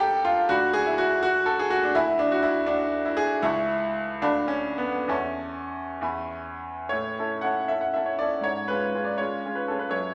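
A bright baby grand piano sits up front in a large studio, its tone brilliant and natural, with long sustain blooming into a wet reverb that lingers about 1.3 seconds. This is a romantic character piece for solo piano in A major, cut from a longer work, moving in 6/8 with a flexible rubato that breathes between 63 and 85 BPM in dotted quarters. The mood is hopeful and lyrical, the single piano spanning from C#2 up to C#6. The opening section drifts through Bm/D, E7/D and A/C#, colored by a Bm7b5/D before settling toward A/E and E. At 6.9 seconds a new section arrives on A and turns to C#/G#, carrying the brief passage to its close at 10.1 seconds.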